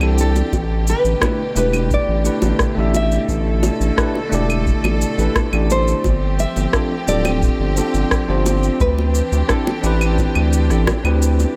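Wistful and smooth, this sunset chillout excerpt moves at 87 BPM in a straight 4/4 in A minor, drifting over suspended ninth chords from D to A to G and back to D. A round analog bass sits up front, deep and dark with a fast attack and sustained notes, while a bell-like tine electric piano supplies bright, clean accompaniment coloured by tape echo. Alongside them, a rich studio string section holds smooth, bowed chords with vibrato. The melody comes from a full-bodied, fingerpicked nylon-string guitar entering at 0.2 seconds, its deep classical tone also carrying tape echo. Rhythm comes from layered electronic claves, shaker and rim click with an overdriven edge, low-tuned bongos played with hard hands in the background from 0.4 seconds, and a deep, tape-warm electronic kick drum arriving at 0.5 seconds. Light reverb gives the mix a soft sense of space.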